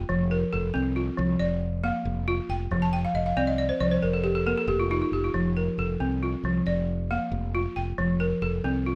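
A rolling 12/8 pulse with a straight feel carries this joyful, flowing passage of West African traditional music, which is cut from a longer piece. The balafon spins out continuous arpeggios up front, its woody, buzzing tone struck with hard rubber mallets, and it breaks into a fill between 2.8 and 5.3 seconds. Beneath it, a fretless electric bass holds the low register with a round, direct sound, sitting up front alongside the balafon for the full nine seconds. The harmony sways between F and B-flat over a steady F in the bass. Close, detailed microphones and a light reverb keep the sound intimate and clear.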